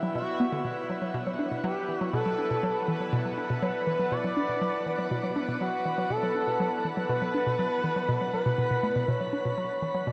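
Ambient in B minor at 121 BPM, this expansive, hypnotic excerpt rests on a single Bm chord, with a hollow, bouncy square-wave pluck riff and a smooth, nasal synth lead carrying the melody up front, both fattened by chorus and delay, with phaser on the pluck and vibrato on the lead. Beneath them, a bright, detuned sawtooth pad with a sub octave sustains evolving, resonant chords through slow filter swells. A bubbling texture of random resonant filter steps drifts through its own built-in reverb until 9.1 s, and a wet shimmer reverb with a long 7.7-second tail bathes the whole mix.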